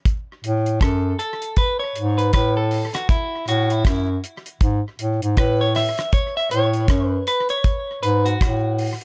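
A dry, close-sounding recording with little room reverb opens this short, sunny roots reggae clip, cut from a longer piece and moving at 79 BPM with a swung 16th-note feel over a single F# minor chord. A damped 70s drum kit with a tight kick, rim click and hi-hat sits up front from 0.1 seconds, joined at 0.4 seconds by a soft-attacked, classically styled bass clarinet holding down the low end between F#2 and A2. At 0.8 seconds a clean, picked electric guitar enters and carries a solo between E4 and E5, its warm tone coloured by tape echo and plate reverb.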